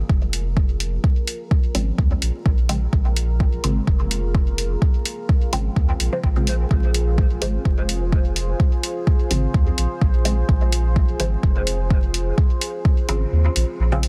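A hazy, meditative dub techno excerpt opens with a dark, moody pad holding sustained chords through chorus, vintage sampler grit and its own reverb, while a muted, nasal, detuned chord stab moves through a filter sweep with phaser and dub echo over a round, soft sub bass, all three pumping to the sidechain. An up-front, deep electronic kick enters at 0.1 s and a hi-hat at 0.3 s, both overdriven and layered with a small-room tone. The kick drops out at 13.3 s, leaving the groove drifting over vinyl crackle in a dense, heavily limited master.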